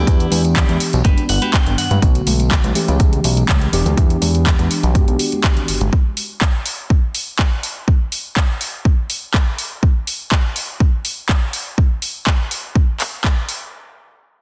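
A fat, saturated analog bass with a nasal sawtooth bite pumps through a low-pass filter in this funky, groovy filtered disco house cut at 123 BPM, joined by a mellow, phased tine electric piano comping on Em7, Gmaj7, Bm7 and A7/C#, a clean, picked electric guitar riff with gritty 12-bit sampler texture that ends at 2.0 s, and tambourine and congas in the background, until after 5.9 s only the punchy, overdriven electronic kick and the bright-hatted, handclap-driven house drum kit remain, the kick carrying on to 13.3 s and the kit to 13.6 s in a dense, heavily limited master.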